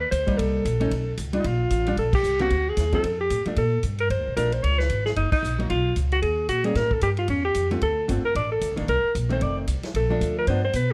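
A clear, forceful alto saxophone carries the melody up front, its vibrato and punchy attack giving this playful, swinging excerpt of small-group jazz its bright personality. Beneath it, a woody pizzicato upright bass sits close in the mix. A vintage acoustic drum kit keeps time on ride, hi-hat, snare and kick, with crash cymbal touches and a natural studio-room sound whose top end is rolled off. A picked, hollow-body archtop guitar adds dark, clean, compressed accompaniment under the horn. The whole band hits accents at 2.1 and 5.3 seconds, and the harmony turns toward a new passage at 3.6 seconds. Light reverb frames the group, and the clip is cut from a longer performance.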